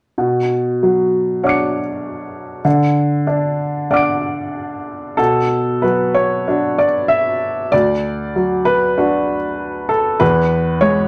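A clear, woody upright piano plays alone from 0.2 seconds, sitting up front and intimate with audible action noise and a touch of slapback echo, ranging from deep bass to high treble. This wistful, reflective neoclassical minimalist piece moves at 96 BPM in 4/4 with a rubato feel in B minor, cycling between Bmadd9 and D before turning to E at 10.2 seconds. The dry, close 1970s-style studio sound carries only light reverb, giving this fragment of a longer work a natural, reflective intimacy.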